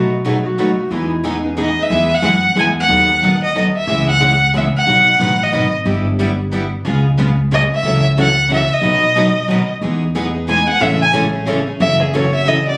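Lively and charming, this short cut from a longer piece of acoustic string swing in the jazz manouche style moves at 182 BPM in a swung 3/4 in E major. A mellow clarinet opens as a second line, with light vibrato, soft attacks and scooped, jazzy notes, until 1.9 seconds. The violin enters with the melody at 1.6 seconds, bowed by one player with smooth, even vibrato and a warm tone, sitting up front and louder than the rest. Two picked steel-string guitars give the accompaniment with audible finger squeak: one a dark dreadnought, the other a bright concert model. A woody pizzicato upright bass anchors the harmony as it moves through chords such as Emaj7, C#m7, G6 and C#7. From 9.8 seconds the violin plays a solo over Emaj7, Amaj7 and F#m7, all heard through a phone recording in a club room with moderate reverb.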